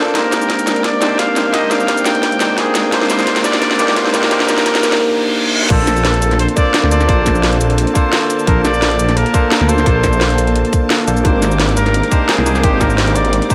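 Soaked in a dreamy plate-reverb haze, this lush liquid drum and bass fragment at 173 BPM pairs a breathy, nasal muted trumpet solo under a filter sweep with barky, gritty electric piano, distant biting strings pumping behind, a tight kick and cracking snare kit with metallic hats, and a faint riser and reverse cymbal at 5.0 seconds before the drop at 5.7 seconds brings in a menacing, saturated detuned saw bass over Abmaj9#11 and Bbmaj9 chords.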